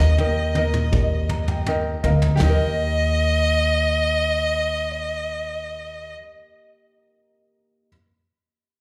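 Acoustic pop in Eb major at an easy-going, heartfelt 81 BPM, heard as a short cut from a live gig through the venue's PA with club reverb. A clear, close violin carries the bowed melody with vibrato up front, over fingerpicked bright ukulele, a woody, growly pizzicato upright bass and a brushed drum kit whose opening fill ends at 2.4 seconds. The felt-muted upright piano sits mellow and boxy in the background, adds a fill from 0.9 seconds, and rings on by itself until 7.9 seconds, with slapback echo on the violin, ukulele and piano.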